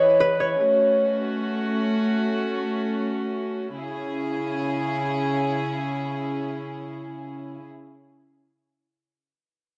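Hip hop with a melancholic, eerie cast, in which a ringing, fingerpicked concert harp carries a brief up-front melody through tape echo until 2.3 s, while a distant, reedy chamber string section holds bowed sustained chords with light vibrato and a gut-string, period-style tone through 7.7 s, set in a lush hall reverb.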